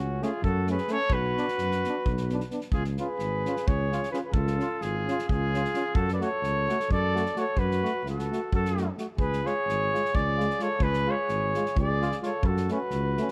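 Balkan folk for a brass band, this fiery yet bittersweet passage is cut from a longer piece and moves at 260 BPM counted in eighths, in a straight 7/8. The mellow trumpet carries the melody up front with light vibrato, sounding distant and roomy, while the soft-attacked flugelhorn traces a second line beneath it. A dark, close-miked tuba anchors the bass from the opening, and from 0.2 seconds a bright trombone and a euphonium with light vibrato fill out the accompaniment in the background, joined by a natural acoustic drum kit with a punchy kick and a medium-tuned snare in a small room. The brass play in a classical style throughout. Harmony shifts from F#m to Bm before a second section begins at 2.7 seconds, swinging between C# and F#m. Close, detailed microphones and light reverb keep the ensemble clear and intimate.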